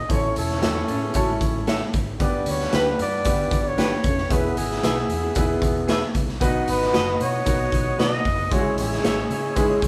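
A straight 4/4 groove at 114 BPM drives this uplifting, danceable slice of 1960s-style soul in B mixolydian, cut from a longer piece. A raw garage drum kit sits up front, its gritty, saturated hi-hat, snare and boomy kick pumping in a bright stone room. Beneath it, a vintage foam-muted fingered bass gives a round, amped bottom. A dark, distant trumpet carries the melody with light vibrato in a jazz style, while a clear horn section plays a soft-attacked second line in octaves behind it. A natural-sounding baby grand piano comps with short sustain, and a hollow-body semi-hollow electric guitar adds clean stabs shaded by harmonic tremolo. A mellow, compressed electric guitar riff sits in the background until 6.2 s, and a very quiet, lightly overdriven tonewheel organ with key click and slow rotary enters at 6.4 s with sustained chords. The riff returns at 9.6 s as the band, playing live in one large studio room, moves through A, G, E, B and C#m.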